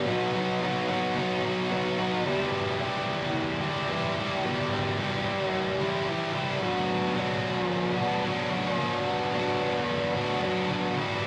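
A rough rehearsal-room recording with tube saturation and a short, wet booth ambience frames this hazy, dreamy rock excerpt in E minor, set at 110 BPM in a straight 4/4. A single overdriven electric guitar, picked and double-tracked, sits up front and plays alone throughout, its warm tone spanning E2 to G4. It opens on a B chord, moves to E minor at 2.2 seconds and to B minor at 6.6 seconds.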